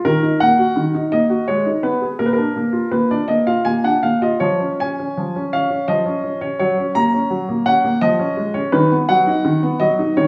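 A clear grand piano carries this short classical-period sonatina fragment by itself from 0.0 to 10.3 seconds, its smooth, vintage tone placed up front. The mood is restless yet elegant, moving in 3/4 at 83 BPM with a rubato feel that lets the pulse breathe. The harmony opens on E-flat minor and passes through A-flat minor, B-flat, C-sharp over E-sharp and F-sharp before settling on B over D-sharp, and the part ranges from Eb3 to A#5. The instrument is tuned to A4 = 441 Hz, and a moderate recital hall reverb of about 1.6 seconds blends with a small room ambience around it. The passage is cut from a longer piece, so it feels like a glimpse into a larger movement.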